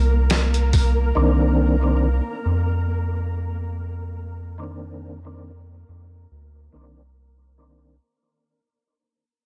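A dry, close-up sound carries this cinematic, melancholic trip hop passage, cut from a longer piece and fading out across its 8 seconds over a single minor-ninth chord. A deep, round dub sub bass with tube saturation sits up front under a flickering, grainy, detuned texture bathed in its own reverb, while a gritty, pitched-down boom bap drum kit with a thumpy kick and medium-tuned snare sounds only briefly, from 0.3 to 1.0 seconds. At 1.2 seconds a mellow, dark tonewheel organ enters with key click, percussive attack, fast rotary speaker, chorus vibrato, harmonic tremolo and tape echo, a filter sweep running through it to the end.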